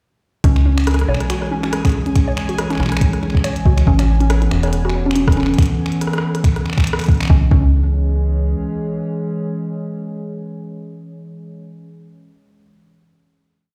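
IDM at 140 BPM in C# minor with a lightly swung 16th feel, melancholic and cerebral, built on a broken, soft electronic kick pattern and a glitchy, ever-changing kit of clicky hi-hats, finger snaps and rim clicks with digital delay, all re-recorded in a large stone room. Up front, a metallic FM bass with tube saturation plays long gliding notes beneath a dusty, mellow pluck whose 11-step arpeggio loop drifts against the bar through chorus and digital delay, while a bubbling, resonant stepped-filter texture holds a high G#5 in the background until 5.6 s. A nostalgic, lo-fi tape-like pad with a slow attack warbles through dark chords moving from C#m to Aadd9 and back, sustaining the final chord and ringing on alone from 8.5 s to 11.5 s.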